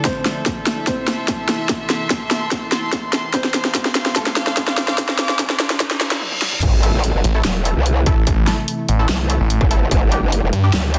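A half-time 4/4 pulse at 146 BPM drives this menacing, chaotic heavy wobble dubstep cut in A phrygian, where a distorted electronic kick and an up-front dubstep kit with a huge snare, bright hats, handclaps, toms and crash build through a drum fill. Behind them, a dark, boxy baby grand piano carries a filtered melody with tape echo, a gut-string studio string section adds reedy texture with light vibrato, and an evolving wavetable pad holds pumping chords while a very quiet riser and reverse cymbal lead into the drop at 6.6 seconds. There a wobbling, formant-filtered growl bass enters, soon followed by a snarling, detuned sawtooth bass, and both are joined by bold, nasal orchestra-hit-like stabs over Am and Gm in a dense, heavily limited master.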